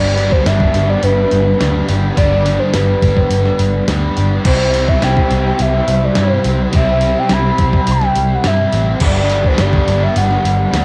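A breathy sine lead with chorus and tape echo floats over three overdriven guitars, one with reverse reverb and one a bright double-tracked semi-hollow, while a dark foam-muted bass and a thumpy 12-bit drum machine hold up this hazy, wistful shoegaze fragment, joined at 1.0 seconds by a very quiet ethereal pad as Gmaj7 gives way to Cmaj7 on a cassette-recorded home take.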